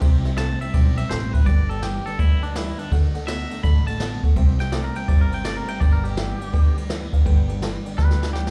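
A twangy, compressed electric guitar carries the melody from 0.4 seconds with slapback echo and analog delay in this retro, rowdy swung rockabilly excerpt, riding over up-front brushed drums with dark cymbals and a boomy kick, a thumpy gut-string upright bass, a bright clean electric guitar riff bathed in spring reverb, a very quiet full-bodied jumbo acoustic guitar, and a jangly, detuned honky-tonk piano tucked in the background, all heard through a club PA as the chords move from C to G to D, ending on a drum fill at 8.0 seconds.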